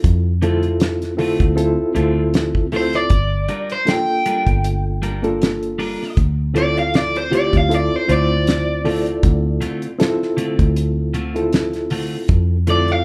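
An overdriven semi-hollow guitar carries the melody from 2.8 s, its picked, hollow-bodied tone sitting up front in this smoky, soulful straight-eighth soul blues at 78 BPM in D minor, moving from Dm7 to Gm7 and back. Beneath it, a reedy electric piano with fast tremolo provides mellow accompaniment, and a clean, compressed electric guitar adds stabs bathed in spring reverb. A foam-muted, round electric bass and a damped 70s kit with a fat snare, tight kick and rolled-off top give the band, recorded live in one room with light reverb, a dark groove.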